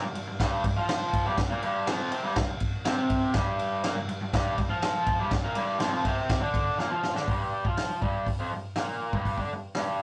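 This rough rehearsal-room recording has the grainy feel of cassette tape and a moderate, short booth ambience, capturing a rowdy, raw garage rock cut from a longer piece. At 122 BPM in a straight 4/4, a bright, overdriven electric guitar, picked and double-tracked, sits up front, driving a riff built on a G5 chord across a range from F2 to F4, tuned slightly under standard pitch. A vintage acoustic drum kit joins at 0.2 seconds with a punchy kick, a fat snare, hi-hat and ride cymbal, its natural studio-room tone marked by a rolled-off top and also placed up front. A drum fill from 6.8 to 7.3 seconds carries the band into a new section, which runs to the end at 10.0 seconds. The gritty guitar and thick, close drums give the fragment an unpolished, live-in-the-room energy.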